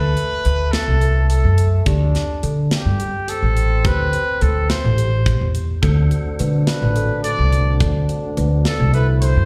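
Driving in a straight 7/8 at 212 BPM counted in eighths, this bright progressive instrumental in D mixolydian moves between D7 and C5 chords in a short cut from a longer piece. A woody pizzicato upright bass sits up front while a tight metal drum kit with a medium-tuned snare and tight kick works the hi-hat from 0.2 seconds. Above them, a distant, roomy trumpet carries the melody over a veiled cup-muted trombone line, with both horns and a bell-like celesta, ringing in the background, treated with slapback echo. A mellow, lightly overdriven tonewheel organ with fast rotary swirl joins at 5.8 seconds, all heard through a live venue's PA with recital-hall reverb.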